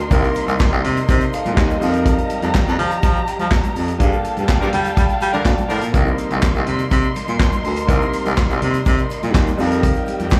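A driving, sultry disco groove at 124 BPM in C dorian opens with a breathy, whispered baritone saxophone carrying the bass line up front, a punchy vintage drum kit with handclaps, hi-hat and snare, and a clear concert grand piano with slapback echo comping beneath lush, dark strings bowed with portamento. Bright congas and a grainy, very quiet egg shaker sit in the background as the chords move from Cm7 through F9sus4 to Gm9. A band accent arrives around 4.0 seconds, where a vintage horn section adds stabs from 4.6 to 5.8 seconds, all heard as a live gig through a club PA with small-room reverb in this short cut from a longer piece.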